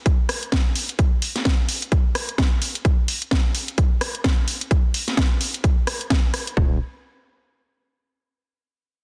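Bouncy and aggressive, this bass house excerpt rides a swung groove in four. An overdriven, punchy electronic kick sits up front from the very start, joined by an equally overdriven house kit of hi-hat, rim click and a cracking snare, both layered and re-recorded in a large room. The drums carry the passage alone until about 6.6 seconds, when the opening section gives way to a new one. At that point a growling, thick FM bass with a sine core and fast attack breaks in briefly on a low Eb, sustained, overdriven and pumping against the sidechain. The sound is dry and dense, with a heavily limited modern master.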